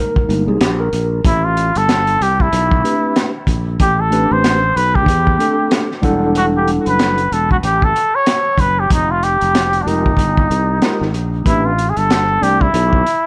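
Jazz-hop in A minor at 94 BPM with a 16th-note swing, this mellow, nocturnal clip opens with a clean tine electric piano playing alone on a rootless Fm11 before a gritty breakbeat kit with a punchy kick and high-tuned snare, plus a growly fretless bass thickened by tube saturation and lush chorus, settle in beneath it. At 1.3 seconds a cup-muted trumpet takes the lead up front, breathy and veiled with vibrato and a trail of tape echo, floating over chords that move from Am11 through Em11 and Fm11 back to Am11. The dry, grainy hardware sound carries only a light reverb, and the piece is cut from a longer work.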